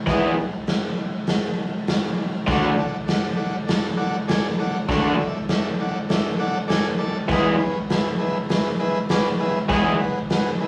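A rough rehearsal-room recording with tube saturation and a moderate studio reverb opens this swaggering, rowdy garage rock excerpt at 100 BPM in E mixolydian, where a bright, overdriven, double-tracked electric guitar riff and an acoustic drum kit with a punchy kick, medium-tuned snare, hi-hat and rolled-off top sit up front from the start. At 2.5 seconds a vintage, buzzy combo organ enters with clean sustained chords as the harmony moves from E to D, returning to E at 7.3 seconds before the guitar stops at 9.9 seconds and the organ carries on to the end.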